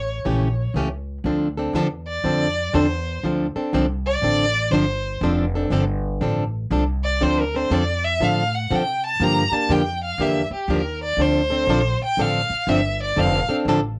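A bowed violin with a focused, vibrato-rich tone and a cassette-tape grain opens together with a thumpy, woody pizzicato upright bass on gut strings, and a picked steel-string acoustic guitar with old strings joins at 0.2 seconds in this swinging D minor jazz manouche excerpt at 121 BPM. From 1.3 seconds the violin takes a virtuosic solo over Dm7 and Gm7 harmony, with the guitar's accompaniment sitting up front. The room is a booth with moderate ambience and a home-recorded feel.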